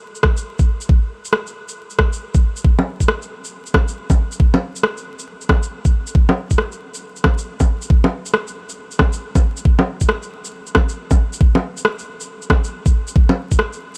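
A swung sixteenth-note groove in 4/4 drives this short fragment of future garage, its lopsided shuffle giving the pulse a nocturnal lilt. An electronic kick drum, layered and overdriven, knocks up front from 0.2 seconds and drops out at 13.6 seconds. A produced kit of electronic shaker, rim click and bongos also sits up front, starting alongside the kick and carrying on until 14.0 seconds. Behind the drums, a digital ambience colored with vinyl crackle lends the track its dusty, wistful haze. The excerpt stays within a single section, holding one unbroken mood of late-night reflection.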